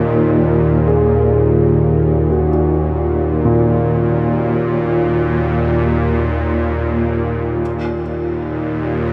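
Dark and cavernous, this dark ambient drone in Eb minor drifts in free time, tuned to A4 = 439 Hz, and is cut from a longer piece. A tense, string-like sawtooth drone with a noise layer, slow attack, long release, vibrato and its own reverb sits up front from the start, low in the register and bright, with a filter sweep running through it until 7.6 s, when the music moves into a new section. From 0.9 s a dark, mellow baby grand piano plays long-sustained arpeggios through a diffuse ambient delay, further back, while a huge, wet reverb with a 7.6-second decay gives the piece its vast, shadowy space.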